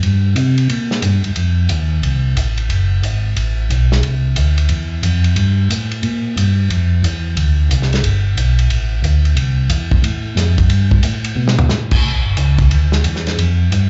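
Soulful and swinging, this short cut from a longer soul jazz organ trio piece moves at 180 BPM in 4/4 with a 64% swing on the eighths. A mellow tonewheel organ carries the bass line up front, its round, dark tone lightly overdriven and colored by chorus vibrato and a slow rotary speaker. An acoustic soul drum kit sits lower in the mix with a tight kick, medium-tuned snare and rolled-off top, adding a fill from 11.4 to 11.7 seconds, all heard as a live club gig through the venue's PA with a dull, capped high end.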